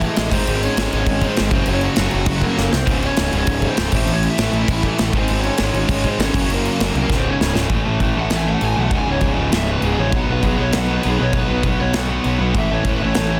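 A fuzz-laden picked electric bass sits up front with a punchy big rock drum kit and its bright cymbals, driving this urgent, raw punk rock at 199 BPM in C# harmonic minor. Two picked riff guitars stack beneath, one dark, compressed and overdriven in the background, the other tight and bright with distortion, over chords moving through G#, F#, C#5 and A. A warm garage guitar carries the melody with overdrive and delay, drum fills land at 2.6 and 7.1 seconds, and at 7.7 seconds the feel drops to half time as the overdriven guitar takes a solo, set in light reverb and a dense, heavily limited master.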